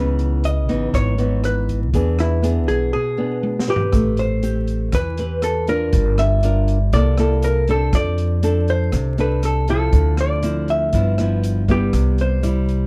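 A straight 4/4 bossa nova groove at 120 BPM drives this smooth, intimate piece, with an open acoustic jazz kit (high-tuned snare, boomy kick, hi-hat, rim clicks and toms), a grainy, very quiet egg shaker and a thumpy, up-front pizzicato upright bass on steel strings. A small, fingerpicked nylon-string guitar with old strings gives woody accompaniment, while a dark, clean, compressed hollow-body electric guitar plays the picked melody through plate reverb, moving from C#m9 and E7 into A minor at 3.9 s after a break from 2.9 s capped by a drum fill. The production is warm and lightly reverberant, with vinyl crackle beneath it.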